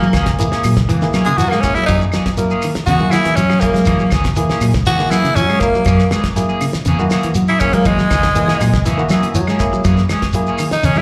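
Hypnotic, funky afrobeat at 121 BPM in F# mixolydian, cut from a longer piece played live in a club and heard through the venue's PA, where a raspy, gritty tenor saxophone solos up front with vibrato and scooped notes over an F#9 chord, while a barky, lightly overdriven tine electric piano comps and adds a fill at 8.4 seconds, a clean guitar picks arpeggios in the background, a twangy, slightly broken-up guitar adds stabs, a round, foam-muted fingered bass anchors the groove, and a grainy shekere, woody claves and a dry 70s drum kit with a fat snare and tight kick drive the straight 4/4 pulse, with slapback echo on the saxophone, electric piano, both guitars and shekere.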